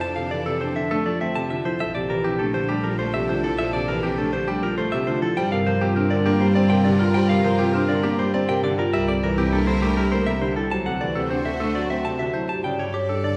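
Bathed in a wet recital-hall reverb, this hypnotic, bright minimalist classical excerpt at 101 BPM in 3/4 sets a twangy, up-front clean electric guitar melody over clear grand piano accompaniment, woody marimba arpeggios, quieter sustained chords from a smooth, bowed symphonic string section and a lush bowed double bass section, moving from F6 and Bbmaj9#11 through Gm7, C9 and D7 to Gsus2.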